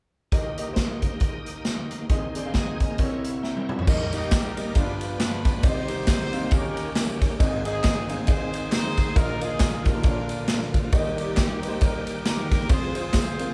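Hopeful and soulful, this uptempo gospel excerpt in Eb major swings at 136 BPM as a woody upright piano, a shouting tonewheel organ with fast rotary speaker, overdrive and chorus vibrato, and a punchy, up-front big-band drum kit play together in a large studio room until fills from piano and organ at 3.2 seconds, joined by the drums at 3.4 seconds, bring in background tambourine and group handclaps at 3.9 seconds and a loose horn section with light vibrato carrying the melody from 4.1 seconds.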